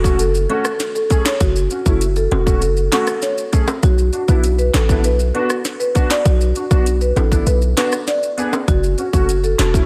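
A lightly reverberant studio sound frames this bouncy, sultry dancehall excerpt, built on a tight, overdriven electronic drum kit with sharp snare, metallic hats, rim clicks and handclaps up front beside a punchy, heavy 808-style bass. A woody marimba carries the melody through analog delay over a chorused, open-sounding grand piano with long sustain and sidechain pumping, while soft-handed acoustic maracas and timbales add close color. The chords move from F#m to Bm and back, and the kick drops out between 7.5 and 8.7 seconds.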